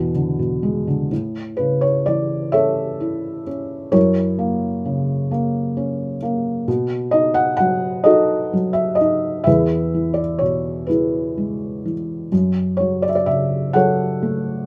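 A felt-muted upright piano opens alone on an E7 chord, then settles into A major at 1.1 seconds for a tender, calm classical passage in a slow, rubato 6/8 at 43 BPM. The lyrical solo drifts from F#7 through B7 and E to close on F#m, spanning E2 to F#5 in this short cut from a longer piece. The thick felt gives the tone a soft, dark, intimate character, and the piano sits up front in light reverb with its action noise clearly audible.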